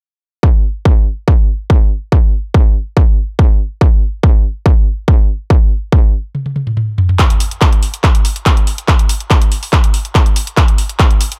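A straight techno pulse drives this hypnotic, relentless fragment. An up-front, layered electronic kick with distortion and overdrive starts at 0.4 s, and at 6.3 s an overdriven, produced techno kit of handclaps, hi-hats and toms bursts in with a break and drum fill. The hats and toms pump against the sidechain as the track pushes into its second section at 7.2 s, all in a dry sound with little reverb.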